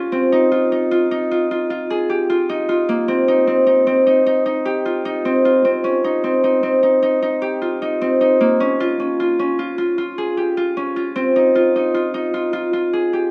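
A moderate recital-hall reverb with a 1.9-second tail surrounds a solo Celtic harp, its top end capped above 10.5 kHz. This restless, urgent passage from a longer contemporary instrumental piece moves at 152 BPM in a straight 7/4, with the warm, ringing, fingerpicked harp placed up front between Bb3 and Ab4. Its harmony travels from F5 through Cm7, Cmadd11 and Bbm before returning to F5 at 11.2 seconds.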